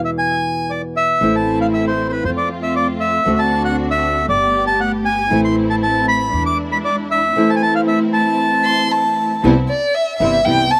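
Tango at 117 BPM in A harmonic minor, tense and melancholic with a rubato feel, opens with fingerpicked nylon-string guitar and woody pizzicato upright bass beneath a reedy, up-front bandoneon melody, while a lush, bowed studio string section adds smooth stabs from 1.2 seconds. Near the close, at 8.6 seconds, a dark, expressive violin enters with vibrato, portamento and slapback echo, taking a brief solo from 9.4 seconds as the harmony moves to Cmaj7. The sound is dry and outdoor, with little reverb, in a short cut from a longer piece.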